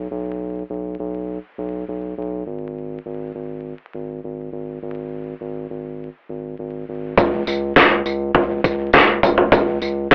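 A detuned 8-bit drum machine sits up front in this hazy, ethereal dream pop excerpt. It arrives at 7.2 seconds with a thumpy kick, a fat snare, tambourine and toms, all pushed through overdrive and carrying the character of a sampler re-recorded in a small room. Before that, a round analog bass holds the piece alone from the start, a deep, dark tone with a triangle-and-sine body, a fast attack and long sustain, colored by tube saturation and kept low in the mix between G#1 and C#2. The tempo is a steady 102 BPM in a straight 4/4. Light reverb surrounds the recording, and a worn cassette quality adds vinyl crackle, warbly pitch drift and a thin telephone-like filter, giving the short cut a faded, dreamlike haze.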